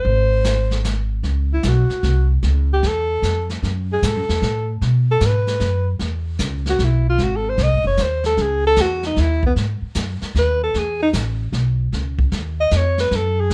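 Small-group jazz in a swing-and-bop vein, this moody, late-night fragment of a longer piece moves at 152 BPM in a swung 3/4, set in C# minor. The breathy alto saxophone carries the melody up front, its subtone playing and light vibrato giving a smooth, gently rounded top, and from 1.2 seconds it stretches out into a solo that runs to the end. Beneath it, the upright bass sits close and thumpy, its pizzicato gut strings sounding woody and dark. The brushed drum kit enters at 0.1 seconds and stays distant and roomy, with a boomy kick, a medium-tuned snare and a rolled-off top. Light reverb and a dark, warm production give the short passage an intimate glow as the harmony moves through colors such as C#7sus4, C#aug, F#m and C#madd9.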